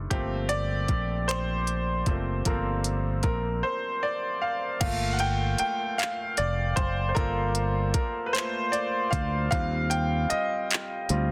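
A bright, intimate baby grand piano with audible action noise and long sustain carries a yearning, late-night slow six-eight R&B excerpt in G minor at 51 BPM, taking the lead throughout over Gm11, Gm7 and Eb69 harmony, while an up-front, direct-amped fingered electric bass holds the low end and an electronic, produced drum kit with a soft kick, smooth hi-hats, finger snaps, handclaps, crash cymbal and a softly clipped snare enters at 0.1 seconds, all set in light reverb under a dense, heavily limited modern master.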